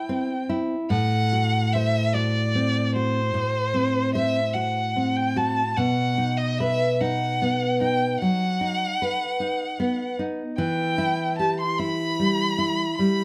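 Close, detailed microphones and light reverb give this elegiac romantic duo an intimate, present sound, with both players up front. A rich bowed violin carries the melancholic melody in rubato 12/8, singing with vibrato and expressive portamento. A full-bodied, fingerpicked nylon-string guitar with fresh strings supports it through chords moving from C to F#dim/A, then to B at 5.8 seconds and Em at 10.6 seconds, in this passage cut from a longer piece.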